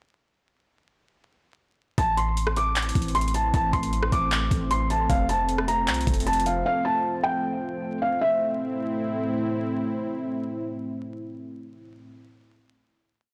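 A felt-muted upright piano leads this brooding, menacing trap cut, its soft, intimate tone thickened by heavy felt and audible action noise as it repeats a looping melody like a sampled phrase, passed through a low-pass filter and tape echo. Set in A minor at 154 BPM with a half-time feel, the hook moves from Am to F before settling back on Am for a final chord at 8.2 seconds. A dark, up-front analog pad holds sustained chords, detuned sawtooth tones with a sub octave giving it a full-bodied, evolving character under a chorus effect. A clean 808-style bass drops long, boomy sub-bass notes that follow the kick and slide in pitch, while an up-front electronic trap kit of knocking kick, metallic hi-hats with fast rolls, handclaps and rim clicks drives the beat until both stop at 6.6 seconds. The pad lingers alone to close at 12.1 seconds, and the whole recording carries a blown-out, overdriven grit with vinyl crackle and a light digital ambience.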